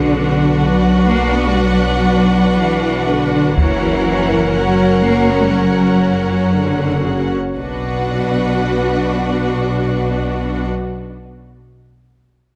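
Set in a moderate concert hall reverb, this dramatic, relentless stretch of epic orchestral film score is cut from a longer piece, with bowed string sections singing with vibrato over a shift from B minor to F-sharp and back to B minor at 7.6 seconds. The close, rich cellos sit at the front as the bass, underpinned by distant, even double basses, while intense violas fill the middle and a focused, smooth-topped violin section carries a second line above. Between 3.6 and 4.5 seconds a taiko ensemble strikes with heavy sticks, dry and set back in the background.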